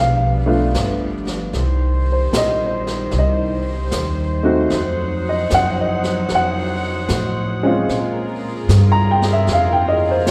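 A woody, boxy upright piano, dark sul tasto strings with soft, floating bowed chords and a pizzicato upright bass open this intimate, late-night jazz ballad excerpt in F minor at 76 BPM with a gentle swing, and a vintage brush kit with brushed snare and hi-hat joins at 0.7 seconds over a G7, Cm7, F7b9, Bbm9 progression, the piano and bass sitting up front within the lush reverb of a concert hall.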